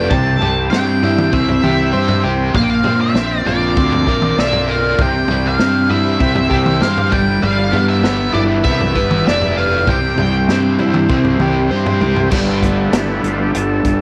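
A kaleidoscopic, hazy psychedelic rock passage cut from a longer piece, moving at 98 BPM in a straight 4/4 around G mixolydian. An up-front, double-tracked overdriven electric guitar carries the riff with a harmonic tremolo, while a dark, round fuzz bass grounds the low end. A picked octave-fuzz lead guitar sings the melody through wah, distortion and slapback echo until 11.7 seconds. Behind them, a buzzy overdriven combo organ holds sustained chords with heavy vibrato, and an acoustic vintage drum kit with a punchy kick, medium-tuned snare and dark, rolled-off cymbals drives the groove. The harmony shifts among C, Bbadd9 and G6, and a drum fill at 12.0 seconds leads into a transistor organ solo over Gadd9 from 12.3 seconds, all set in a small room with light reverb.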